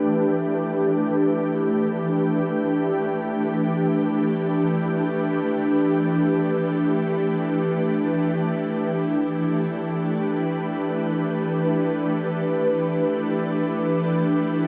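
Ambient music in free time, melancholic and reflective, this short excerpt cut from a longer piece features a lone airy synth pad, detuned and vintage in tone with a warbling ensemble chorus, delay and built-in reverb, sustaining slow-attack tones between E3 and B4 over a G chord up front in a wet concert hall reverb with a faint mains hum underneath for the full 14.7 seconds.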